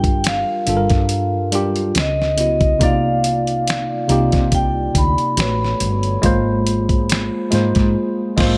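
Introspective and sultry, this short neo-soul R&B fragment in C minor moves at a slow 70 BPM with a light sixteenth-note swing, as a ringing vibraphone with medium hard mallets and slow motor vibrato carries the melody over a worn, slightly out-of-tune tine electric piano placed up front. A dark, round fretless electric bass with a woody, hollow-body tone and a gritty, compressed sampler-style drum kit with thumpy kick, fat snare, hi-hat, finger snaps and crash cymbal hold down the groove, while a very quiet glass harmonica sustains ethereal, glassy chords in a boxy small room. The band hits an accent at 8.0 seconds, just before the clip ends at 8.6 seconds.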